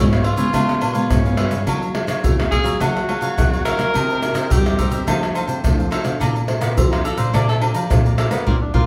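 Samba and choro at 106 BPM in a lively, playful mood, cut from a longer piece, with a vintage, jazz-style tenor saxophone soloing throughout the 8.9 seconds with vibrato, subtone and scooped notes over a Db7 to Bbmaj9 progression. A crisp, bright cavaquinho and two fingerpicked classical nylon-string guitars, one comping and one carrying the bass, support it, while shaker, pandeiro, tamborim, agogo bells and a deep surdo sit up front in the percussion. The band plays live in one large room with wet reverb and hits an accent at 8.5 seconds.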